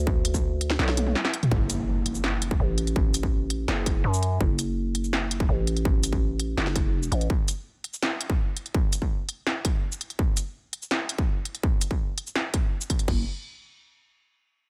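Half-time drum and bass at 166 BPM in F# minor, this dark, cinematic excerpt opens on a drop where a growling, buzzy, saturated 808-style bass sits up front beside a distorted electronic kick and an industrial kit of clanging snare, crisp hats, shaker, toms and crash cymbal, both drum parts carrying studio reverb, before a drum fill at 1.0 seconds leads into an electronic impact at 1.6 seconds, with the bass dropping out at 7.3 seconds while the drums drive on through a digital ambience.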